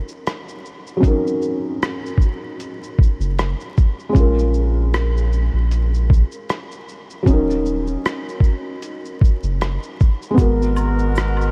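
Lo-fi hip hop with a nostalgic, hazy mood, built on a dark, felt-muted upright piano whose chords carry audible action noise and short sustain, over a muffled, pitched-down sampler-style drum kit with 12-bit grit, a thumpy kick, hi-hat, rim click and shaker. A deep, round dub sub bass enters at 3.2 seconds, and at 10.4 seconds a distant, roomy brass ensemble adds tight sustained chords while maracas and woodblock sit quietly in the background. Light reverb and a layer of vinyl crackle wrap this short fragment of a longer piece in a dusty, intimate haze.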